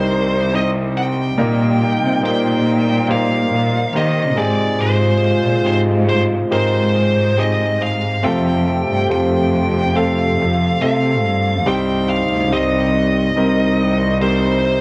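A heartfelt, hopeful pop ballad excerpt at an unhurried pace, where an up-front, high-gain electric guitar carries the melody with distortion and dub echo over a concert grand piano with audible action noise, deep bass and long sustain. A lush, bowed cello section with smooth vibrato anchors the bass up front, while a dark, tight French horn section plays a second line in the background, both horns and piano also trailing dub echo. The echo-heavy mix sits in a small, lightly reverberant room as the chords move from Cm through Ebmaj7/Bb, Abmaj7 and Fadd9 before returning to Cm at 11.7 seconds.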